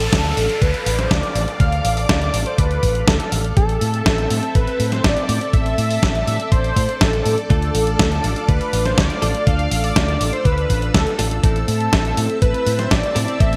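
A straight 4/4 groove of thumpy, tape-warm electronic kick and an up-front 12-bit drum machine snare and hi-hat treated with gated reverb drives this danceable, melodramatic italo disco excerpt. A dark, round, foam-muted fingered bass sits underneath, and a background downlifter runs through the first 3.6 seconds. A thick, detuned sawtooth unison lead with vibrato, chorus and delay carries the melody over lush, slow-attack string machine chords alternating between Dm and Am; from 7.5 seconds a twangy, direct-recorded clean guitar adds picked stabs in the background, all within a bright 1980s-style digital production and a moderate, lush hall reverb.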